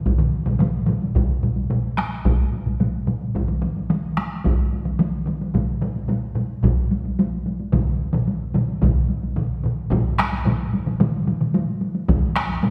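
Heavy-sticked taiko drums sit up front in this powerful, ceremonial Japanese traditional taiko ensemble passage in straight 4/4, alongside close, hard-sticked taiko parts, one of them dry and set back in the background, all ringing out in a reverberant recital-hall space, with a short break at 9.4 seconds before a new section opens at 9.9 seconds in this fragment cut from a longer piece.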